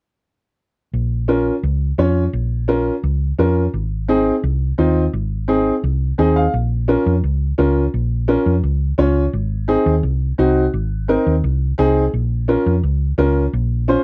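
A straight 4/4 cumbia groove drives this passionate Latin excerpt, cut from a longer piece, as a dark, round hollow-body electric bass enters at 0.9 seconds and a clear, woody upright piano follows at 1.3 seconds, both sitting up front. The harmony moves between Bb minor and Ab, and the piano plays a short fill at 6.0 seconds before the second section begins at 6.5 seconds. The dry, close sound recalls a 1970s studio, giving the boxy piano and amped bass a tight, immediate presence.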